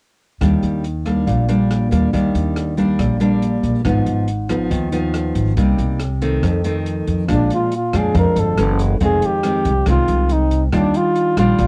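A straight 4/4 bossa nova groove opens this sophisticated, breezy excerpt, with up-front fingerpicked nylon-string guitar playing woody, classical-style accompaniment over thumpy pizzicato upright bass and a dark, smooth jazz kit of hi-hat, rim click and boomy kick, before a mellow, breathy flugelhorn with vibrato takes the solo melody at 7.3 s, the whole recording carrying light reverb and the homespun grain of cassette tape.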